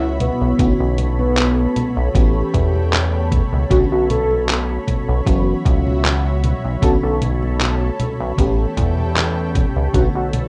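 A rough, lightly reverberant home-demo sound with cassette-tape grit frames this woozy, nostalgic vaporwave fragment in B minor at 77 BPM, with a slight swing in 4/4 over chords moving between Bm9, A9 and F#7sus4. A glossy, nasal chorused synth bass sits up front beside a thumpy, sampler-style electronic kick drum from 0.6 s, while a detuned 8-bit digital drum machine adds congas, handclaps and hi-hat from 0.2 s; both drum parts are tape-warm and re-recorded in a large room. Above them drift a dreamy FM electric piano with a soft pad layer, a thick, bright lush unison pad with chorus and phaser, and a velvety, smooth synth lead melody carrying vibrato, chorus and tape echo.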